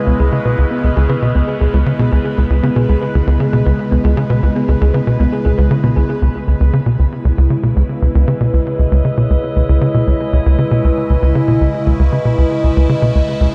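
Ambient, sequencer-driven space music in C# minor at 117 BPM, this expansive, mysterious excerpt sets a tight, punchy sawtooth sequencer bass riff up front beneath an evolving, detuned wavetable pad on a C#m7 chord with phaser and shimmer reverb, while a round, tine-like thumb-piano-like pluck arpeggiates through delay and a resonant, bubbling stepped-filter texture glimmers until both drop away at 6.2 seconds, all within a dark production and a huge ambient reverb.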